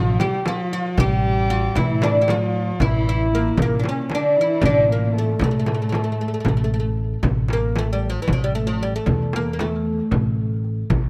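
In a straight-feeling 7/8, this passionate, stately Turkish makam ensemble piece, cut from a longer performance, is tuned to A4 = 436 Hz. A fretless, plectrum-plucked oud with double strings carries the melody up front, its woody tone touched by tape echo. A pizzicato upright bass with steel strings adds a thumpy, prominent low end. Two bowed instruments supply second lines: a dark kamancheh with vibrato, portamento and a smooth top, and a clear, nasal cello played sul tasto with a soft attack and a pure, floating quality. Both drop out at 6.9 s, just before a new section begins at 7.2 s. A deep, large frame drum struck with hard hands sits close, while a crisp metal-shell darbuka with a vintage, band-limited sound stays in the background, and light reverb with detailed miking keeps each part distinct.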